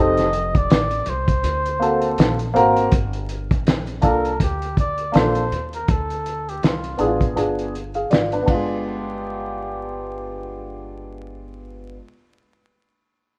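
A breathy, veiled cup-muted trumpet carries the melody over a mellow, cool jazz-hop groove at 81 BPM with a swung 4/4 feel, while a dark, worn grand piano with audible action noise sits up front beside it. Woody, thumpy pizzicato upright bass and a cloth-damped, lo-fi drum kit with a fat snare and gritty, muffled cymbals fill out the small room, with a filter sweep starting at 2.9 seconds and the drums dropping out at 8.7 seconds. Light reverb and vinyl crackle give this cut from a longer piece a rough home-demo character as it moves from F7 through Gm7 and Dm7 to G7b9.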